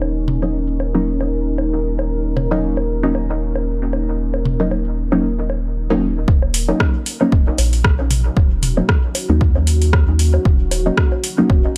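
A dry, gritty hardware sound frames this cavernous, nocturnal dub techno cut, moving at 115 BPM in Eb minor with a light swing on the Ebm7 chord. A detuned sawtooth pad holds dark, chorused chords and a round, nasal analog bass sits up front, both pumping against the sidechain. Electronic woodblock and toms tick through dub echo, while a muted, filter-plucked chord stab, swept through its filter until 6.3 seconds and coloured by phaser and cassette tape, repeats in echo as a deep, tape-warm kick arrives at 6.3 seconds and a deep house kit of metallic hi-hats and rim clicks joins it.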